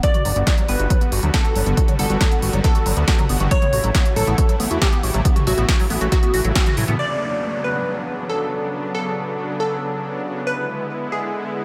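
Emotional and driving, this uplifting trance passage in B minor runs at 138 BPM in a straight 4/4, cut from a longer piece. A punchy electronic kick sits up front alongside a big-room dance kit of crisp hi-hats, a punchy snare and toms, while a fat, detuned sawtooth bass enters at 0.3 seconds and pumps against the kick beneath chords moving from Gmaj7 to A. Behind them, a squelchy, resonant acid bass plays arpeggios in the background with a filter sweep, ensemble chorus and tape echo, and a lush supersaw pad holds sustained chords with sidechain pumping throughout. Over the top, a glassy, crystalline wavetable pluck carries a second line with chorus and tape echo, its ring-modulated tone shaped by a moving notch. The kick stops at a band accent at 6.6 seconds, and the rest of the drums and the basses drop out at 7.0 seconds, leaving the pad, the pluck and a falling downlifter to sit in light digital ambience over Bmadd9 and E7.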